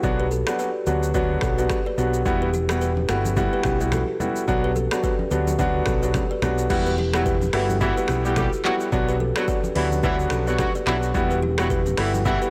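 The recording sounds blown-out and overdriven, set in a small room with light reverb, giving this short afrobeats excerpt a hazy, saturated edge. At 108 BPM in E minor with a swung sixteenth-note feel, the mood is sultry and hypnotic, circling between Bm and Emadd9. A polished baby grand piano sits up front as accompaniment, while a round, punchy fingered electric bass anchors the low end, and an electronic afro-pop kit with a deep kick, metallic hats, snaps, handclaps, rim clicks, shaker and crash carries its own overdrive. A woody, hollow-toned kalimba enters at 0.2 seconds with a bright, ringing riff touched by tape echo, and very quiet medium-tuned congas join at 2.5 seconds. At 7.1 seconds a tight, vintage-style horn section adds a second line with light vibrato and octave doubling, its clear tone also carried on tape echo.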